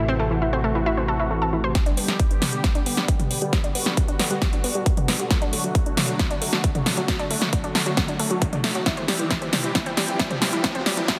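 A filtered supersaw swell and an analog pluck open this uplifting, euphoric trance excerpt at 135 BPM, the detuned unison pad holding sustained chords through a phaser while the nasal, wave-folded pluck spins arpeggios with chorus and dub echo, both pumping against the sidechain. A round, dark FM bass sits up front under the opening Am chord, then drops out at 1.7 seconds as a filter sweep on the supersaw closes the short first section. At 1.8 seconds a big-room dance kit and layered electronic kick arrive with a punchy snare, metallic hats and toms in a drum fill, launching a build-up over G, D and C while a filter sweep moves across the pluck arpeggio. A very quiet riser enters at 3.5 seconds and sits beneath the drums, which carry a small room ambience. The mix sits in a lush hall reverb and is finished as a dense, heavily limited modern master, cut from a longer piece.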